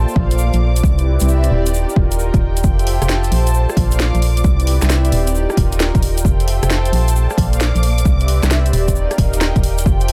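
A detuned, chorused analog pad, a hollow, organ-like FM bass and a dark, bowed studio string section all sound from the very first moment of this bouncy, sunny slice of two-step UK garage. The groove has a swung sixteenth-note feel, and the harmony cycles through lush major ninth chords, Bbmaj9, Cmaj9, Ebmaj9 and Fmaj9, again and again. The FM bass sits up front with a fast, percussive attack that quickly decays. The pad's soft, warbling sawtooth tone and the intimate, sul tasto strings both carry sidechain pumping. A grainy, close acoustic egg shaker slips in quietly in the background, and then an overdriven, punchy electronic kick and a layered house kit with cracking snare, rim click and bright hats join at 0.2 and 0.3 seconds. The mix has little reverb, which gives the whole short cut a tight, immediate presence.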